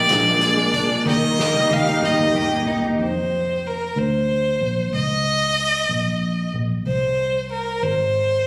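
Tender and romantic, this slow six-eight pop ballad at 62 BPM sets a clear, focused solo violin up front over a lush, woody string section, a chorused clean electric guitar, a full-bodied acoustic guitar with delay, and a soft-mallet drum kit whose fill runs from 1.1 seconds. Around 3.0 seconds the strings, both guitars and drums stop, leaving the violin and the dark, round, foam-muted bass to carry the harmony through chords such as Dbsus2 and Ab/C. The sound has a roomy, club-like reverb and compression, as if captured on a phone in the room, in this excerpt cut from a longer piece.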